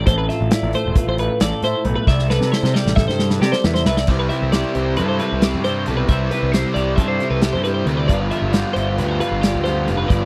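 This excerpt from a longer math rock and midwest emo piece opens on two clean, twangy twelve-string electric guitars, one chiming in accompaniment with spring reverb and the other spinning bright arpeggios through analog chorus, over a punchy, fuzz-driven picked bass and a loose, up-front indie drum kit that plays a fill from 2.1 to 4.1 seconds. At 4.1 seconds a double-tracked overdriven electric guitar joins with a riff as the harmony moves from Fmaj7 and C69 to Cmaj7 and G7. The wistful, playful music runs in a straight 9/8 and has the dry, close sound of a 1970s-style studio recording.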